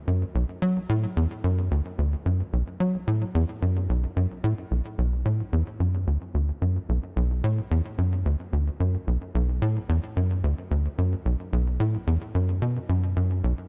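Ambient music with a cosmic, expansive mood, this excerpt is cut from a longer piece and runs in a straight 4/4 feel. A tight sequencer bass plays alone from 0.1 to 13.5 seconds, moving through a low register from B1 to F#3. Its sawtooth and square wave tone has a plucked filter shape, with a fast attack that then decays, giving the line a punchy, driving character. The sound is saturated yet mellow, sitting up front in the mix, with a subtle chorus and delay. A light reverb gives the solo line a sense of space that suits the spacious, otherworldly atmosphere.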